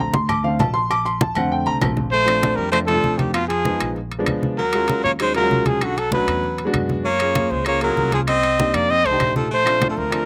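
A sunny, danceable Afro-Cuban jazz groove in a straight 4/4 at 195 BPM, tuned to A4 = 437 Hz, is driven by bright, low-tuned congas, ringing agogo bells and timbales with a slapback echo, and woody, vintage-sounding claves in the background, over a thumpy pizzicato upright bass. An intimate concert grand piano with audible action noise and deep bass carries the first 2.1 seconds on a Bbmaj9 chord. At that point a breathy, vibrato-laden trumpet, up front and touched with slapback echo, takes the melody, joined by an edgy, forceful baritone saxophone with scooped notes on a second line, as the dry, close outdoor sound moves through extended chords such as Ebm11, Gbmaj9 and F13 in this fragment of a longer piece.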